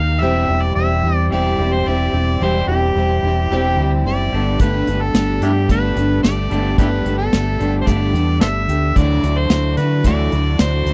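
Folk rock with a heartland rock streak, this short cut from a longer piece carries an open-road, nostalgic mood over a straight 4/4 feel. An amplified, overdriven harmonica takes the lead with a gritty edge, light vibrato and tongue slaps. A picked steel-string acoustic guitar supplies warm accompaniment, complete with audible finger squeak, while a dark, round, punchy fingered electric bass sits up front and a twangy, slightly broken-up electric guitar through a small old amp plays a riff in the background. A lush, bowed symphonic string section holds very quiet sustained chords across a C/E, Gadd9 and Dadd9 progression. The acoustic drum kit joins at 4.6 seconds with bundle sticks, a tight kick and a medium-tuned snare, its airy small-room sound set in a dry, close 1970s-style studio recording.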